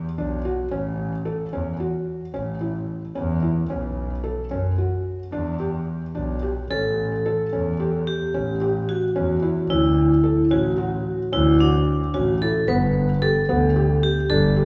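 This is contemporary chamber music in 11/8, a restless, hypnotic passage cut from a longer piece, moving at 222 eighth-note beats per minute with a straight feel and tuned slightly below standard pitch at A4 = 439 Hz. A felt-muted upright piano plays arpeggios throughout, its soft, mellow tone intimate and short in sustain, with the audible clatter of its action adding a natural closeness. Beneath it, a single bowed double bass carries the bass line in a clear, biting voice with vibrato, sounding intense and up front. At 6.7 seconds a vibraphone struck with hard mallets enters as a second line, its dark, metallic ring smoothed by a slow motor vibrato. The harmony drifts from a rootless E7 through A, Bsus2 and Em7 before shifting to A7, Dmaj9 and finally Gadd9. A reverberant recital-hall acoustic with a 1.8-second decay surrounds the trio, giving the sense of a church or concert hall.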